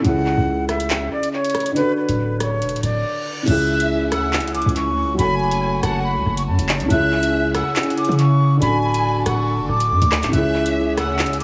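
Over a half-time drill beat at 140 BPM, with metallic hats, handclaps and rim clicks from a tape-warm kit and a punchy, heavy 808-style bass up front, a breathy, close-miked flute carries a dark, cold C# phrygian melody above a soft, felt-muted upright piano with audible action noise, both soaked in tape echo. At 2.8 seconds a reverse cymbal ushers in a lush, expressive violin section and a reedy chamber string section holding sustained chords from 3.5 seconds in this echo-heavy excerpt from a longer piece.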